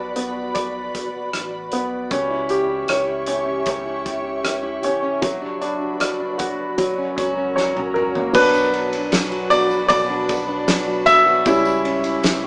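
A straight 4/4 pulse at 77 BPM carries this heartbroken, melancholic pop ballad in B minor, a short cut from a longer piece. A clear, polished baby grand piano sits up front with the accompaniment, while an ethereal, airy pad holds mellow sustained chords above it, softened by ensemble chorus and its own built-in reverb, and a round sine sub bass hums deep in the background. A loose indie drum kit with a fat snare, tight kick and rolled-off top keeps time across kick, snare, toms, hi-hat, rim click, ride and crash. A full-bodied, fingerpicked jumbo steel-string acoustic guitar joins with arpeggios at 2.1 s. A drum fill at 7.6 s leads into a piano solo at 8.3 s, where a jingly, very quiet tambourine also enters. The chords move from Bm through C#dim and Bm/F# to F# before returning to Bm, and the whole band sounds as if it is playing live in one room, heard through a small speaker and bathed in a wet studio reverb.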